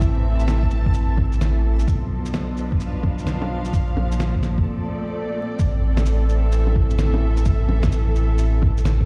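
A deep, round sub bass sits up front in this nocturnal, melancholic future garage excerpt, pumping under the sidechain beside a muffled, pitched-down kick and a swung, sampler-style layer of shaker, fat snare and bongos. A rich, smoothly bowed string section holds sustained chords roughened by vintage 12-bit grit and the same pumping, while a dreamy, reversed granular texture drifts in the background until 4.7 seconds. A brief break follows, carrying a faint electronic swell before the groove returns at 5.6 seconds, all wrapped in vinyl crackle and the large reverb of a bare room.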